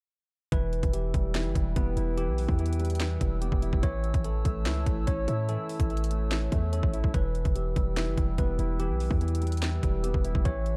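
Eerie and melancholic, this half-time trap excerpt in E dorian at 145 BPM pairs a dark, vintage baby grand and mellow tine electric piano arpeggios through digital delay with a warbling, lo-fi tape-like pad drifting in the background from 1.1 seconds, all over a punchy, heavy 808-style bass and an up-front, overdriven trap kit of hard-clipped kick, sharp snare, bright hats and handclaps, moving from Em to A and back in a dark, digital ambience.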